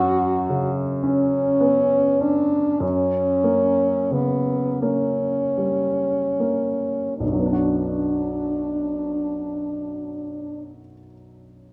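Lightly reverberant, this elegiac, solemn fragment of a romantic classical duo in B minor unfolds in a slow, rubato 12/8 at 23-39 BPM, with a warm French horn singing the melody in its middle register with light vibrato, soft attacks and a roomy glow over a natural-sounding baby grand piano accompaniment that holds a suspended F# chord, resolves it, and eases into a B minor passage at 7.2 seconds after the opening slows, the horn falling silent at 10.8 seconds while the piano carries on briefly to the close.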